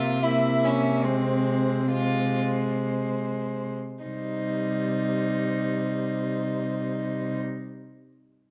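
A single cello, bowed sul tasto with light vibrato and heard close and intimate, anchors this slow, romantic classical string quartet movement on a low C. It sets a yearning, solemn mood in C minor, moving in 3/4 with a rubato feel between 51 and 75 BPM. Above it, a viola with a pure, floating tone and soft attack fills in the accompaniment, while a rich, distant-sounding second violin carries an inner line. The first violin sings the melody quietly with a dark, woody, vibrato-laden tone, all four players bowing sul tasto throughout the 7.4-second passage, which is cut from a longer piece. The harmony moves from C7 to a rootless F minor over C, with the tempo slowing through the opening phrase before a new passage arrives on C minor at 4.1 seconds. A moderate recital hall reverb and a dark, warm production give the ensemble a hushed, veiled glow.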